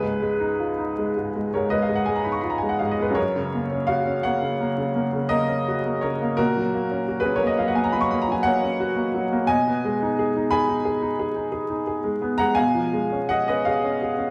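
Wet recital hall reverb and a layer of vinyl crackle surround a clear, woody upright piano that sits up front, its audible action noise and long sustain lending an intimate feel. This serene, tender romantic nocturne unfolds in 9/8 at 57 BPM in F# major, with uneven, rubato beats as the solo piano spans C#2 to C#6 across chords moving from C#9 through F# and G#m/B to C#7/B at 12.6 seconds. The 14.3-second passage is cut from a longer piece.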